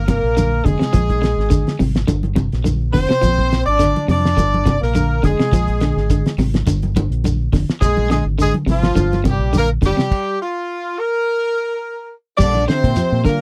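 A dry, close 1970s-style studio sound frames this joyful, funky afrobeat excerpt in Bb mixolydian at 105 BPM, with a lightly swung sixteenth feel. A clear, tight horn section carries the melody over a bright solo trombone second line, while a twangy guitar at the edge of break-up plays arpeggios. Beneath them, a round, punchy dub bass sits up front, and a cloth-damped, thuddy kit with a fat snare and dark cymbals plays alongside congas with hard hands and a grainy shekere in the background. After a vamp between Gm7 and Bb7, the band stops at 10.1 seconds, and at 12.4 seconds a veiled, cup-muted trombone section joins from a distance on a Bb chord.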